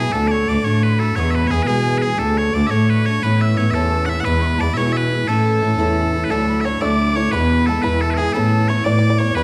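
Loud, bright bagpipes carry the melody of this lively, cheerful Celtic jig, their piercing, continuous tone riding over a brisk 6/8 at 117 BPM in A major, tuned slightly below standard pitch at A4 = 436 Hz. A breathy metal whistle sits above as a second line, its soft, chiffy attack and unsteady vibrato giving it a gentle, human wobble. Underneath, a picked twelve-string acoustic guitar supplies shimmering, octave-doubled accompaniment with audible finger squeak, while a muted cello, bowed con sordino by one player and placed close and up front, anchors the bass with a veiled, dark voice, light vibrato and portamento. At 6.3 seconds a twangy, percussive banjo played with fingerpicks joins in the background as another second line, just as the harmony moves through Dadd9, E and Aadd9. The whole is set in a moderate recital hall reverb with a dark, warm production, and the passage is cut from a longer piece.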